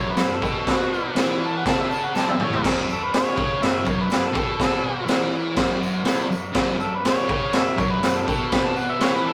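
A straight 4/4 pulse at 122 BPM drives this raw, swaggering garage rock excerpt in F# minor, where a boomy, saturated acoustic drum kit with a high-tuned snare and a rolled-off top sits up front and lands a fill at 2.1 s. A thick, double-tracked fuzz guitar holds a picked low riff on a single F# minor chord, while an overdriven, amplified harmonica carries the melody with light vibrato, tongue slaps and scooped notes through tape echo. A very quiet, jingly tambourine hovers behind them, and the whole take has the rough, tube-saturated feel of a rehearsal room with moderate stone-room reverb.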